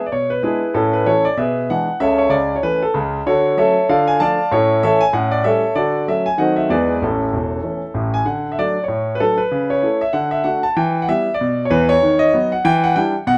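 A clear, up-front concert grand piano plays solo stride jazz from the first second, its deep bass and long sustain ringing in a moderate studio reverb as the playful, exuberant swinging line moves through its chord changes and shifts into a new section at 8.3 s before this excerpt cuts off at 13.4 s.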